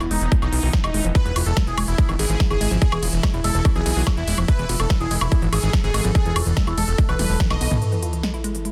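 A straight drive from a punchy, overdriven electronic kick and a big-room dance kit of crisp hats, ride, snare, toms and woodblock powers this alien, intense psychedelic trance drop. A fat, detuned sawtooth analog bass sits up front beneath a bold, bright unison lead with vibrato and phaser, while a woody wave-folded pluck riff and an evolving, overtone-sweeping drone pump in the background. A nasal vowel-sweep wobble bass surfaces very quietly at 2.1 seconds, and a drum fill gives way to an electronic sub drop impact at 7.8 seconds in a dense, heavily limited mix.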